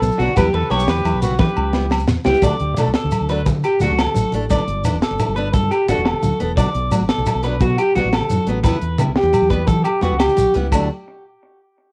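Highlife guitar band music in a straight 12/8, warm and joyful, heard in a short excerpt cut from a longer piece with the character of a home cassette recording in light reverb. A mellow trumpet with light vibrato and scooped, jazz-style notes opens as a brief solo melody over the bass, drums and hand percussion, dropping out by 2.1 seconds as a drum fill carries the band into the main passage. The tight funk kit sounds dry, with bright cymbals, a high-tuned snare and a compact kick, while a round, punchy fingered electric bass holds down the low end. Up front, an electric guitar through a small old amp plays twangy, slightly broken-up arpeggios with analog delay, joined by a bright parlour-style steel-string acoustic guitar picking accompaniment with audible finger squeak. In the background, thin-skinned congas struck with hard hands and a grainy shekere sit alongside ringing agogo bells to fill out the percussion over chords moving through Em, D, Gadd9 and Bm.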